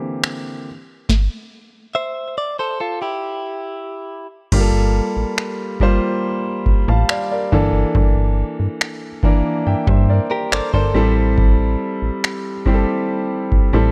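A clear grand piano opens this sensual, moody contemporary R&B excerpt. It is joined almost at once by a booming analog drum machine, placed up front, with a deep kick, tonal snare, finger snaps and crash cymbal. The tempo is a slow 70 BPM in straight 4/4, centred on G dorian. From 1.9 s, a bright, compressed clean electric guitar, picked and recorded direct, adds arpeggios with delay, returning briefly later on. At 4.5 s a slap-like FM bass enters with a snappy, metallic attack and decaying notes, as the harmony moves through Gm9, Gm69 and then Am7. The sound is dry and close, keeping the piano's natural tone in sharp focus.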